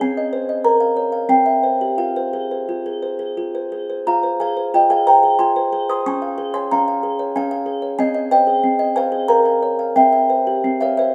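A solo music box opens the piece at once, sounding delicate and tinkling with a mellow, slightly out-of-tune character that suggests a large box placed up front. This brief cut from a longer classical lullaby sits in F minor and three-four time, drifting with a rubato feel at roughly 85-94 BPM. Its mood is fragile and wistful, and the plucked tones range from C4 up to Eb6. The harmony moves through Ab/C, Bbm and C before settling on Fm at 2.0 seconds, and the opening phrase then returns from 4.1 seconds with a Db chord colouring its middle. A moderate scoring-stage reverb gives the recording an airy space around the large instrument as the passage closes on a C chord at 10.0 seconds.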